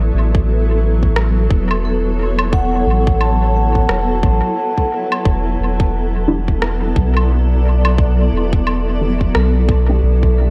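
A light reverb gives this short, hazy stretch of meditative ambient dub a soft sense of space. The piece is cut from a longer work. A cloudy, blurred granular pad hangs over the whole stretch in slow-attack sustained chords, moving from A7 to Em7, while a deep, round sub bass sits up front beneath it. A tight, tape-tinged electronic kick and a rim click and woodblock, re-recorded in a large room, carry a swung groove, with dub echo trailing the rim and woodblock. From 0.8 seconds a muted, dark sawtooth chord stab with a sub octave flickers in the background through phaser, ensemble chorus and dub echo, a filter sweep shaping it throughout. A close-miked, dry vibraphone played with medium mallets joins at 1.9 seconds with metallic, ringing arpeggios that spill into dub echo.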